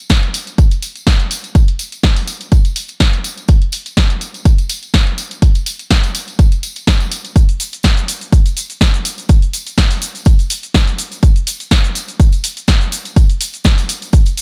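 From the first moment, this energetic yet bittersweet house excerpt swings with a tape-tinged, layered electronic kick up front, a punchy analog drum machine of cabasa, hi-hat and snare ringing in a large room, and a compressed, saturated acoustic tambourine of tube shaker and group handclap sitting in the background, the kick dropping out at 14.2 seconds while the other two run on until the cut at 14.4 seconds.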